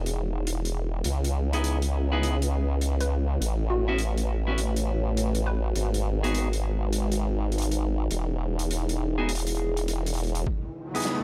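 A dry, gritty hardware sound frames this swaggering glitch hop cut from a longer piece, where an up-front, sawtooth formant-sweep wobble bass rides under a deep, moody analog pad with a filter sweep and sidechain pumping, a big-room acoustic rock kit of hi-hat and medium-tuned snare, clean picked electric guitar stabs treated with tape echo from 1.5 seconds, a woody, wave-folded pluck melody drifting in the background from 3.0 to 5.8 seconds, and a thumpy, compressed electronic kick at 10.5 seconds before an electronic riser closes it out.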